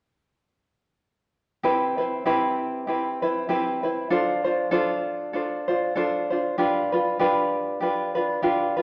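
Worn, warbling cassette tape gives this short Hawaiian fragment a drifting, unsteady pitch, and a wet recital-hall reverb surrounds it. A bright, light tenor ukulele sits up front, fingerpicking an accompaniment from 1.6 to 8.8 seconds through Cmaj7, Dm7 and G7 in C major. The mood is languid and relaxed, at 97 BPM in 4/4 with a gentle swing on the eighth notes.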